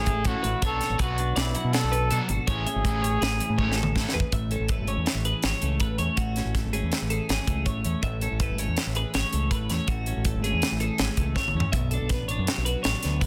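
Playful and intricate, this fragment of math rock and midwest emo moves at 162 BPM in 5/4 in A major, opening with a breathy, whispered trumpet melody with slapback echo and a double-tracked, crunchy overdriven guitar riff with harmonic tremolo set in the background, both ending by about 4.2 seconds. Meanwhile a twangy twelve-string electric guitar with a vibrato effect and a second, warmer twelve-string guitar picking chorus-tinged arpeggios continue over a growling, overdriven fingered bass and a crisp, polished fusion drum kit with a high-tuned snare and tight kick, whose fill from 3.6 seconds leads into the longer second section at 4.3 seconds, all in light reverb under a dense, heavily limited modern master.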